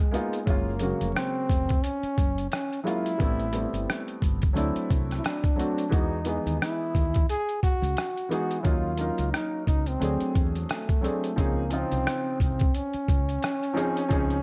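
Jazz-hop at 88 BPM with a cool, warm mood: a close-miked trombone sings a vibrato-laced melody with soft attacks and scooped notes over a gritty, pitched-down boom bap kit of thumpy kick, hi-hat and rim click with a lazy 16th-note swing, a woody upright piano comping polished chords from Gbmaj9 through Emaj7 to Dbmaj7, and a growly fretless bass with analog chorus entering at 0.5 seconds, all set in a small, lightly reverberant room under dark production and vinyl crackle.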